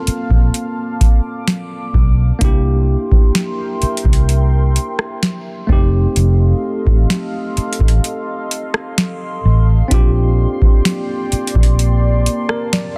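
A worn, slightly out-of-tune electric piano, lightly overdriven as if through built-in speakers, opens this short, moody contemporary R&B fragment alongside a deep, dark ambient pad with chorus and its own reverb. From 0.1 seconds, a booming analog drum machine and a vintage muted fingered electric bass arrive together, sitting up front in the mix. The drums are dry and tape-warm, with a deep kick, a tonal snare, rim clicks and metallic hi-hats. The bass sounds round, punchy and amped, its foam-muted notes staying low in the register, while the detuned, sawtooth-and-sine pad holds sustained chords with a slow attack and long release. The sensual progression moves from a rootless Gm11 through C7 and F7 before resting on Bb69 near 9.9 seconds, all in a dense, heavily limited modern master with little room sound.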